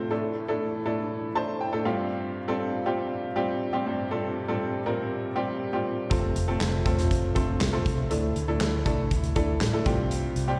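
A clear, woody upright piano opens this uplifting piano-driven pop excerpt at 120 BPM in C major, playing a brief fill at 1.1 seconds over a distant, roomy French horn section holding sustained chords in the background, before a dark, round, foam-muted electric bass and a loose indie drum kit with a punchy kick, snare, hi-hat and handclaps enter together at 6.1 seconds, all heard as a live gig through the venue's PA with a recital hall reverb.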